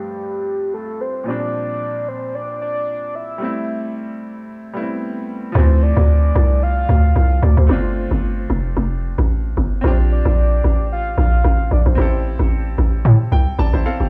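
This hypnotic, deep amapiano excerpt in D minor opens with a soft, octave-layered synth lead carrying the melody over a clear baby grand piano during a filter sweep. The lead has a round, dark tone built from triangle, sawtooth and sine layers with a sub octave, and it is coloured by chorus, vibrato, a low-pass filter and tape echo. The piano accompaniment is present and also filtered, moving through G9sus4, Bb6 and Am7 harmonies at 112 BPM in 4/4 with a light 16th-note swing. At 5.6 seconds the drop arrives with a hollow, bouncy log drum bass that sits up front in the mix, its FM tone carrying a noise layer, a fast attack and a decaying tail. The lead stops at 12.4 seconds, and the piano adds a fill from 13.1 seconds as the log drum bass plays on to the end of the passage. The whole recording has a dry, gritty hardware and cassette character set in a small room reverb.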